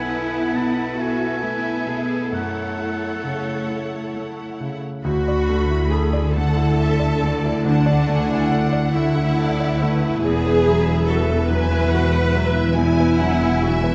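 Sorrowful and longing, this cinematic film-score excerpt for orchestra drifts in a rubato 6/8 at roughly 44-48 BPM in F# minor, cut from a longer piece. A violin section with soft attack and expressive vibrato carries the melody high above, while a second violin section with a rich, intense tone and light vibrato sings a second line beneath it. A clear solo oboe in classical style adds its own line only for the opening 3.7 seconds. Up front, a bright, lush viola section and a polished concert grand piano with deep bass and short sustain supply the accompaniment, and a focused cello section sits in the background on the bass. At 5.0 seconds a double bass section joins, its expressive bowed low notes deepening the foundation as the harmony moves from F#m7 toward Dsus2 and later Esus2, all set in a moderate concert hall reverb with a dark, warm production.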